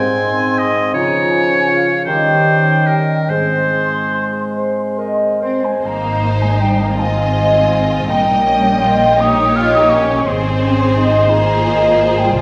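A bright, up-front oboe opens this serene classical excerpt in Ab major, a slow rubato 6/8 at 46-58 BPM, alongside a mellow background clarinet, a pure, hollow silver concert flute, a punchy bassoon, dark, distant French horn chords and ringing fingerpicked concert harp arpeggios; the oboe, clarinet, bassoon and horns fall away by 5.8 s while flute and harp carry on alongside lush bowed strings, with expressive cellos arriving at 5.4 s, then a rich, distant violin section taking the melody over a soft-attacked second violin line, a focused viola accompaniment and a smooth, even double bass section, the whole set in the wet reverb of a recital hall.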